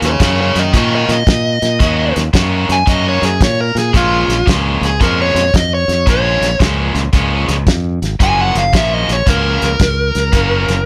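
Mournful and soulful, this fragment of a 112 BPM electric blues shuffle in Bb minor, moving from Ebm7 to Bbm7 and Gbmaj7, pairs a dark, overdriven, smooth lead guitar melody with a bright, cranked stack guitar riff, a growly, direct fingered electric bass, and a dry soul drum kit with a fat snare, a tight kick, hi-hat and a pumping room sound, all under light reverb.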